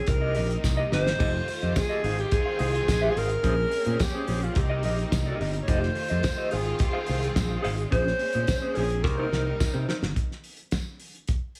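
Glamorous and danceable, this disco excerpt sets a breathy, whispered alto saxophone melody with scooped notes over lush bowed strings, a dark, clean electric guitar with tremolo, a growly fingered electric bass, a damped 70s drum kit with a fat snare and tight kick that fills at 0.6 and 9.0 seconds, and a jingly tambourine far in the background, all in studio reverb, with the drums playing on until 11.6 seconds.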